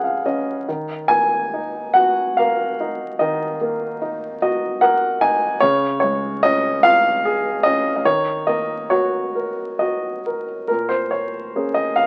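Classical solo piano in a dark, reflective mood, this brief fragment of a longer piece drifts in rubato 3/4 at 64-76 BPM in Eb minor, with a woody, intimate upright piano sitting up front, its action noise audible and its notes short in sustain, playing fills at 0.0 s and 4.0 s as the harmony moves from Db through Ebmadd9 and Ebm7 to a closing Bbm7 at 10.7 s, all wrapped in a moderate spring reverb and the crackle of a very old 78 rpm record.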